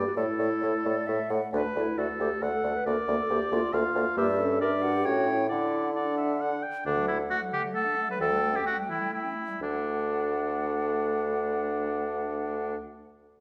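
This excerpt sits in a reverberant recital hall, a quick, spirited classical-period movement for wind quintet in D major and 3/4, moving at 121-138 BPM and slowing between 6.2 and 9.6 seconds. A hollow, pure flute with vibrato and tongued notes carries the melody from 0.2 seconds, while an up-front oboe with light vibrato sings the second line above a dark, distant clarinet and a mellow, smooth-topped French horn in accompaniment. An up-front bassoon anchors the bass as the harmony passes through D, a Bb/D colour and G minor before A7/D returns it to D at 9.6 seconds.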